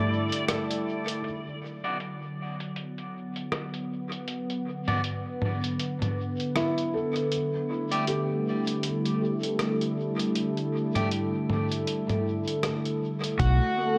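A warbling, nostalgic tape-like pad holds detuned sawtooth chords with chorus through the whole excerpt, its filter sweeping from 1.2 seconds, in this hazy, deep ambient dub cut with a swung sixteenth feel and an echo-heavy chamber mix. A muffled, up-front lo-fi sampler-style kit of hi-hat, rim click and toms runs through dub echo, while a twangy, slightly broken-up electric guitar drops filtered stabs into spring reverb, a felt-muted upright piano plays soft, mellow arpeggios, and an overdriven slide guitar carries brief melody at the start and near the close. At 13.4 seconds a dark, round fingered bass and a thumpy electronic kick land together on a B minor chord, and a resonant, bubbling stepped-filter texture surfaces in the final moments.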